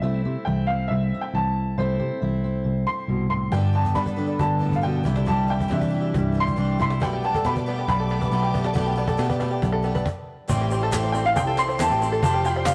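A rough rehearsal-room recording with stone-room reverb and saturation carries this hopeful, warm indie folk excerpt at 138 BPM, where a woody, slightly detuned upright piano leads over a dark, round electric bass up front and a full-bodied fingerpicked acoustic guitar that stops at 8.5 s; a shimmering, octave-doubled twelve-string and a snappy cajon played with soft hands enter at 3.5 s; a plunky open-back banjo and a bowed string section with vibrato and portamento, set in the background, follow; and after a brief stop at 10.1 s, a grainy egg shaker and crisp background handclaps fill out the building arrangement.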